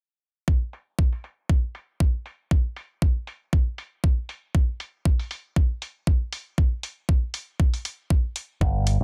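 An up-front, knocking electronic kick drum leads this nu-disco passage, overdriven and layered, with the grit of being re-recorded in a small room; it enters at 0.5 seconds and carries a filter sweep across the drums. An electronic hi-hat joins at 0.7 seconds, also overdriven and up front, its tone softened by low-pass filtering on both the hats and their room sound. The groove sits at 118 BPM in 4/4 with a light 55% swing on the sixteenths, in G minor, with a cosmic, sensual mood. Only at 8.6 seconds does a picked electric bass arrive, bright, punchy and direct, shaped by an envelope filter around a low G. The mix is dry and dense, with a heavily limited modern master, and the passage is cut from a longer piece.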